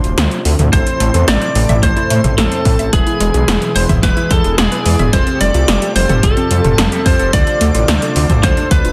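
Nocturnal and cinematic, this synthwave excerpt sets a bright, twangy, lightly driven lead guitar melody with tape echo over an airy, dreamy second lead, a smooth analog pad, a deep, rumbling detuned saw bass up front, and 80s electronic drums with gated reverb on snare and toms and metallic hats, while a warbling lo-fi pluck playing arpeggios, glossy chorused polysynth stabs with phaser, and a punchy electronic kick join at 0.7 seconds under a dense, heavily limited modern master.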